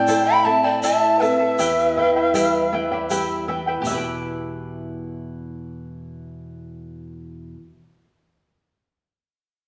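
A breathy, bright wooden quena carries the melody up front over a hollow bamboo pan flute second line, both with vibrato, while a shimmering fingerpicked charango and a flamenco guitar with audible finger squeak accompany and a grainy, distant egg shaker enters at 0.1 s in this festive yet melancholic Andean folk excerpt in E minor at 80 BPM in 3/4, where the guitar adds a fill from 2.4 s, the two flutes stop at 3.1 s, and the strings ring on in a large, reverberant room with the band playing live together.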